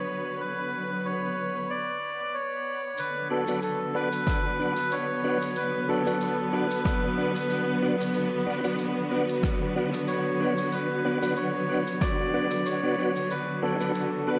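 A reedy, breathy melodica carries the melody through dub echo over lush, bowed symphonic strings holding sustained chords in this hazy, meditative ambient dub excerpt, while a dreamy, reversed swelling texture sits in the background at the start and returns near the close. From 3.0 seconds a shaker and rim click with big-room character arrive, soon joined by clean tonewheel organ stabs through fast rotary speaker and chorus vibrato. A punchy, overdriven electronic kick sits up front from 4.3 to 12.2 seconds, in an echo-heavy mix with a rolled-off top.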